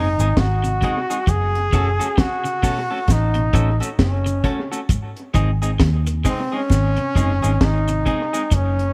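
A brilliant, close-miked trombone sings a sunny, uplifting roots reggae melody with vibrato and tape echo, over a round, foam-muted vintage fingered bass, a compressed clean electric guitar with its own tape echo, and a slightly broken-up electric guitar picking arpeggios in the background. From 0.2 seconds a deep, dry reggae drum kit joins up front with a high-tuned snare, tight kick and hi-hat softened by a rolled-off top and touched with analog delay, while a close cabasa adds light percussion. The echo-heavy, nearly reverb-free mix keeps the lilting swung groove intimate in this short cut from a longer piece.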